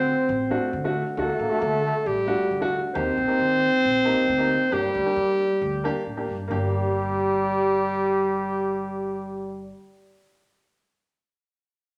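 A straight 4/4 pulse at 135 BPM drives this brief klezmer passage, festive yet soulful, in G harmonic minor and tuned slightly low to A4 = 436 Hz. Up front, a mellow clarinet with a soft attack carries the melody in a classical style, while a clear, punchy trombone sits just as present on a second line beneath it. A dark upright piano supplies woody, short-sustained accompaniment, and a pizzicato upright bass with steel strings adds a thumpy low end, set quieter in the mix. The harmony moves from D to Eb and settles on G minor, and a new section begins at 6.5 seconds. All four parts play throughout, set in a large studio reverb that lends the performance a roomy, wet sheen before the cut at 9.7 seconds.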